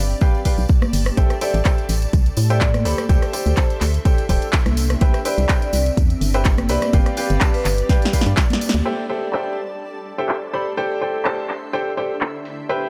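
A hollow, organ-like FM bass and a cloudy, detuned granular pad open this soulful, bittersweet piano house cut at 125 BPM in A minor, pumping under a punchy, up-front electronic kick, a tape-warm analog drum machine with filtered snare and hats, handclaps and rim clicks, and small-room tambourine and congas. A clear, woody upright piano riff with vintage sampler grit and dub echo plays over the Am7, D7sus4 and Cmaj7 changes, while a metallic, ringing vibraphone melody sits in the background from 1.4 to 7.9 seconds. After a drum fill and a band accent, the bass, kick and hand percussion stop by 8.9 seconds, leaving the piano, pad and drum machine for the closing stretch.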